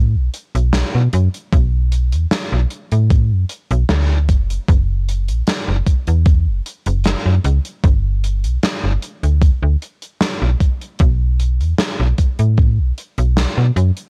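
Vaporwave with a woozy, nostalgic mood, this short excerpt sets a snappy, metallic-edged FM bass up front against a gated 80s kit of airy hi-hat and medium-tuned snare in a bright stone room, while an overdriven, thumpy electronic kick enters at 1.5 seconds, all carrying a dry cassette-tape haze.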